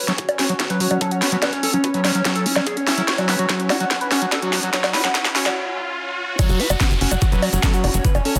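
Psychedelic trance at 145 BPM, driving and hypnotic, this excerpt from a longer piece builds for 6.4 seconds as filter sweeps move across a screaming, guitar-like overdriven lead with phaser and delay, a squelchy, resonant acid bass riff and a morphing, detuned wavetable pad in the background, all pumping to the sidechain, while a faint metallic wobble bass appears from 1.2 to 3.2 seconds and a riser and downlifter sit low in the mix. An overdriven drum kit with cracking snare, bright hats and bongos plays a fill under a knocking electronic kick, then after a short break the drop lands with a punchy, nasal sequencer bass and a grainy egg shaker. A lush hall reverb with digital ambience surrounds the whole track.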